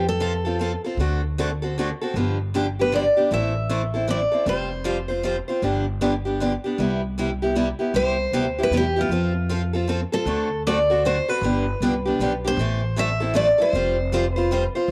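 Playful and lively, this cut from a longer jazz manouche swing waltz sets a bright, full-bodied dreadnought guitar melody that darts in at 0.0, 2.8 and 8.0 seconds over a boxy parlour guitar's accompaniment, complete with finger squeak, and a woody, thumpy pizzicato upright bass on gut strings, with both guitars carrying a cassette-tape tint and the whole home recording set in a light, small-room ambience.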